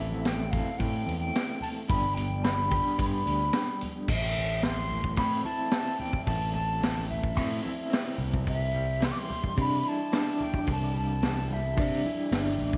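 A light reverb and small room ambience frame this trippy, mysterious psychedelic rock excerpt in A minor at 109 BPM, where a mellow, hollow, distant concert flute with vibrato and slapback echo carries the melody over a slightly broken-up, lo-fi electric guitar riff with tremolo, a growling overdriven fingered bass, very quiet bright congas, and an up-front vintage drum kit with dark cymbals, a high-tuned snare and punchy kick that closes on a drum fill at 12.3 seconds.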